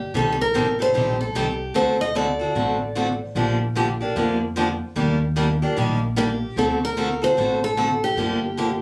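Acoustic string swing in the jazz manouche style, this swinging, virtuosic fragment from a longer piece opens with a bright, up-front picked steel-string concert guitar carrying the melody, which pauses at 3.2 seconds and returns at 6.2 seconds. Beneath it, a boxy parlour guitar with fresh strings picks the accompaniment through a minor-leaning progression from Am7b5 and D7 to Ebmaj7 and Gm7, while a woody, thumpy pizzicato upright bass with gut strings anchors the low end. The sound is that of a phone capturing the room, with club reverb, moderate ambience and compression.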